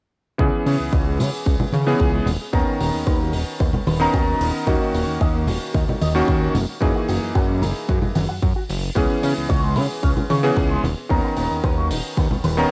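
A warm, up-front electric grand piano with a clangy low end and chorused unisons carries the chords in this groovy, cosmic nu-disco excerpt, running in 4/4 at 112 BPM in C# dorian, its sound colored by cassette tape and analog delay. A fat, thick sawtooth bass with detuned tones and a filter sweep sits beneath it, while a punchy, layered electronic kick drives the straight feel. A bright, twangy electric guitar with an envelope filter plays a picked riff in the background, roughened by analog chorus, 12-bit sampler grit and a low-pass filter, with a filter sweep running across the guitar throughout. A dry, mid-forward hi-hat joins at 0.7 seconds and compressed, saturated congas played with soft hands come in at 1.2 seconds. The harmony moves through C#m7, Bmaj9/D#, D#m7 and F#13 before returning to C#m7, all captured as a home cassette recording with light reverb.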